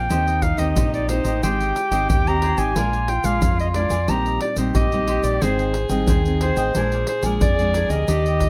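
Detailed microphones and light reverb frame this short, lively samba-choro cut with a sunny glow. An up-front clarinet with a smooth top carries the melody over crisp, picked cavaquinho, full-bodied fingerpicked nylon-string guitar and a round, punchy fingered electric bass, while a breathy, whispered tenor saxophone adds a second line with scooped notes and vibrato. Tube shaker, pandeiro and a deep surdo played with hard hands sound close and dry beneath a harmony cycling through Eb6, Abmaj7 and Bb7.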